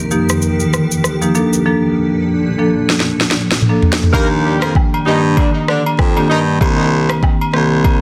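A dark, smooth marimba played with medium hard mallets provides the accompaniment in this mellow afrobeats excerpt at 97 BPM with a swung 16th feel. It sits over an electronic afro-pop kit with a deep kick and a sharp, softly clipped snare, while a blurred, evolving granular pad with its own reverb holds F9sus4 and Bbmaj7 until 4.1 seconds, with a drum fill from 2.9 seconds. From 4.1 seconds a clear baritone saxophone carries the bass, a tight horn section with vibrato and digital delay plays a second line until 6.4 seconds, and agogo bells and woodblock join as the hi-hats fall silent and the harmony turns to Ebmaj7 and Cm7.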